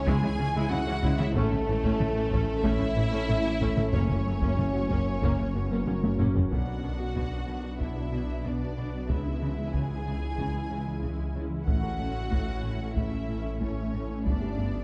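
Tense and futuristic, this hybrid orchestral and electronic film-score passage in B minor moves at 93 BPM, with a vibrato-rich studio violin section carrying the melody over a lush, distant second violin line, a portamento-tinged viola section, background cellos, very quiet double basses that drop out at 6.3 seconds, dark sustained French horn chords, a cloudy granular pad, a ringing harp-like synth pluck weaving arpeggios through a moving notch, a thick, menacing detuned saw bass, and a heavy-stick taiko ensemble whose fill at 5.9 seconds leads into the second section, all set in a dark, moderately reverberant scoring-stage sound.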